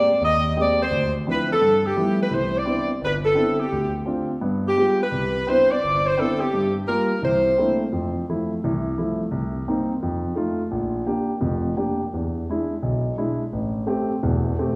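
Joyful and brassy, this swinging jazz excerpt moves at 171 BPM in C major before shifting to F major at 7.9 s, set in a church-like hall with a lush reverb. A tight, mellow saxophone section with vibrato and a smooth top carries the melody up front until 7.8 s, while a concert grand piano with deep bass and a natural tone accompanies throughout and continues alone to the close at 14.8 s. Rich extended harmonies such as Abmaj9, G13 and G7b9 colour the first half, giving way to Fmaj7, Bb6 and E7 in the second.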